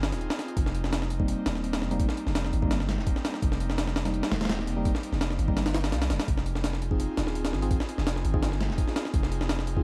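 This dark, nostalgic drum and bass and jungle excerpt at 168 BPM in F minor features a gritty, pitched-up sampler-style drum kit, its thumpy kick, medium-tuned snare and hi-hat sitting up front with a compressed, tape-warm character. Beside it, a deep, sine-like 808-style bass with a fast attack holds long decaying notes, while a mellow, clean tine electric piano enters at 1.2 seconds in the background with stabs trailing dub echo over Fm7 and Cm7 harmony. A very quiet electronic swell rises briefly at 5.7 seconds, and the whole recording is dry, with a prominent layer of vinyl crackle.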